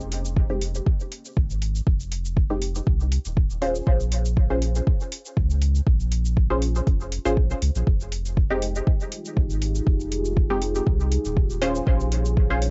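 Dub techno at 120 BPM in F minor, hazy and nocturnal, with a lightly swung groove that alternates between Fm9 and Bbm9 chords. A deep, up-front electronic kick enters at 0.4 seconds over metallic cabasa and hi-hats, while a round, soft sub bass pumps under a muted, detuned sawtooth chord stab carrying chorus, phaser, dub echo and a filter sweep. At 9.1 seconds a moody, full-bodied ambient pad fades in with a slow attack and built-in reverb; the dry, tape-warm cassette sound with its dulled top end keeps this short cut from a longer piece intimate and murky.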